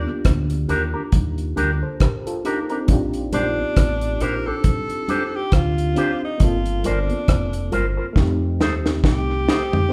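Recorded live in one room with a moderate large studio reverb, this smooth, sweet lovers rock reggae excerpt sets a clear, forceful tenor saxophone melody with light vibrato over a dark, tremolo-laced FM electric piano, a round, punchy fingered dub bass, a dry, up-front drum kit with a high-tuned snare and tight kick, twangy envelope-filtered guitar stabs entering at 0.7 seconds, and ringing, tape-echoed congas in the background, all moving through lush seventh and extended chords before a drum fill from 8.2 seconds.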